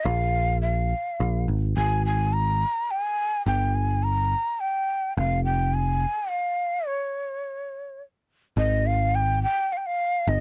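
Hopeful indie folk in a straight 3/4 at 106 BPM, cut from a longer piece, where a breathy, hollow shakuhachi carries the melody with vibrato and a tongued chiff over a growly, punchy picked electric bass, moving through Bb5, Absus2, Gm and Fm chords to a break at 6.9 s before arriving at Fmadd9/Ab at 8.6 s, all captured in a dry, close 1970s-style studio sound with both parts up front.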